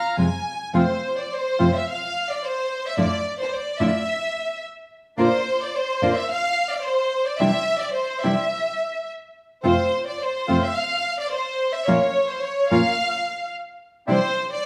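A rich, smooth violin section carries the second line of this dramatic, sultry tango, its bowed ensemble lines carrying vibrato and taking a solo from 0.7 seconds to 14.7 seconds. Beneath it, a full-bodied nylon-string guitar, fingerpicked and sitting up front, provides the accompaniment with a deep classical tone. A reedy, vintage bandoneon adds band-limited stabs lower in the mix. The tempo sits around 108 BPM in 4/4 with a rubato feel, moving in F major through chords such as Dmadd9/F, Bb, Cadd9 and a darkening Bbm. The players sound live together in a stone room with a wet reverb, and the passage is cut from a longer piece.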